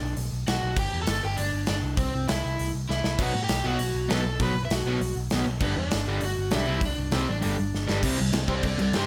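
A straight, driving 4/4 at 198 BPM powers this energetic, upbeat punk rock fragment: a big rock drum kit in a big room gives a punchy kick, a medium-tuned snare, bright cymbals and hi-hat, while a growly, amped picked bass holds down the bottom. Up front, an overdriven semi-hollow guitar carries the melody with a warm, hollow-body tone over chords moving through Bm, G and C, and after a drum fill a double-tracked, distorted electric guitar riff joins at 3.2 seconds. A second fill leads into a short overdriven guitar solo at 8.0 seconds, with light reverb around the band.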